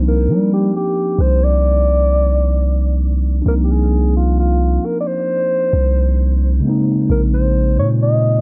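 Dark, low-pass-filtered studio production with reverb frames this moody, sensual contemporary R&B fragment, where a deep, sine-like 808-style bass sits up front beneath a clean, mellow tine electric piano moving from Cm11 to Bbm11, while an alto saxophone enters at 0.1 s for a jazz-style solo in soft-attack subtone, with vibrato and tape echo.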